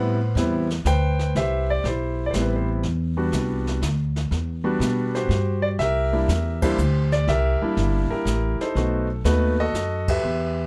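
Jazz piano trio in a swinging 3/4, smoky and late-night in mood, cut from a longer piece, with a clear, intimate grand piano carrying the melody up front, its action noise audible and its notes ringing with long sustain. A woody, growly pizzicato upright bass sits close beside it, while a brushed drum kit with dark cymbals, a medium-tuned snare and a boomy kick enters at 0.4 seconds, quieter in the mix. The dry studio sound keeps things close as the band hits shared accents at 6.5 and 10.0 seconds over moody ninth and seventh chords.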